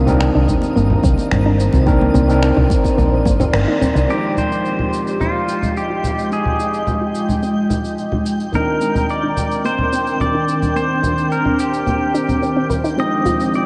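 An excerpt of wistful, smooth sunset chillout in C minor at 108 BPM opens with a barky overdriven tine electric piano, an ethereal airy pad, a soft round pluck, a twinkling granular texture, a dark, woody fretless bass that stops at 4.0 seconds, sampler-style congas, shaker and finger snaps, a deep overdriven kick and very quiet acoustic congas, the latter two dropping out after 3.4 seconds, before a clean, up-front pedal steel guitar carries the melody from 4.1 seconds over Cm9 and Fm9 chords while a filter sweeps the pad, all soaked in a dreamy cathedral reverb.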